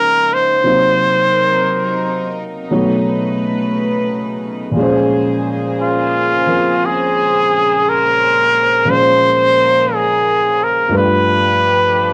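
Recorded at home on cassette and bathed in a wet studio reverb, this wistful, smoky jazz ballad fragment moves at a slow 58 BPM in Bb minor with a swung eighth-note feel. A bright trumpet with vibrato carries the solo melody up front, a baby grand piano with long sustain sits close by in accompaniment, and a chamber string section, reedy with gut-string tone, light vibrato and a smooth top, holds bowed chords beneath. The harmony drifts from Dbmaj9 through Cm7b5 and B9 to a long Bbm9 before turning to G7 at 10.9 seconds.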